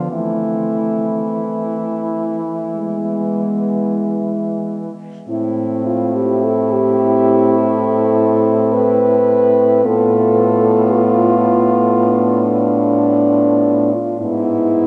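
The rhythm unfolds in a slow, rubato four, lending this classical fragment for horn quartet a yearning, melancholic lyricism. Four French horns play together from the start until 14.9 seconds. A clear, vintage-toned horn carries the melody, while a dark, smooth-topped horn sings the second line. A mellow horn with a soft attack fills out the accompaniment, and the bass horn colours its low notes with vibrato. The harmony moves from Am/E through a Bm7b5/A chord at 9.8 seconds before closing on E/G#, and the opening phrase returns at 5.3 seconds. A long cathedral reverb bathes the quartet in the resonance of a church or concert hall, and the passage is cut from a longer piece.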